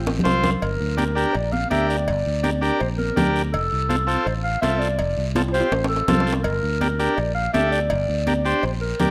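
A rough home-demo sound with light reverb and small-room ambience frames this passionate, danceable cumbia excerpt, where a dark, distant clarinet carries the solo melody in a classical style over a round, punchy fingered electric bass and a buzzy vintage combo organ, both up front. Bright, high-tuned congas played with soft hands sit in the background, joined by ringing, close and dry timbales and cowbell and a raspy guiro. Drum fills open the piece and return at 5.4 seconds, while the harmony moves from F through G minor and back, settling on a G minor add9 chord at 6.4 seconds.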